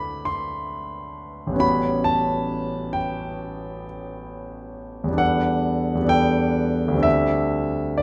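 A clear concert grand piano carries this short solo fragment of impressionist classical music, sounding intimate and up front, with a deep bass and long sustain that let each chord ring. The mood is luminous and dreamy, moving at a gentle 67 BPM in 4/4 with a rubato feel that keeps the pulse flexible. Lush extended harmonies drift from D9 to A13, then Em11 at 5.2 seconds, before settling on D9sus4, all spanning the keyboard from A1 up to D6. Audible action noise adds a close, tactile presence to the polished tone. A moderate recital hall reverb surrounds the playing, and the dark, warm production gives the whole fragment, cut from a longer piece, a rounded glow.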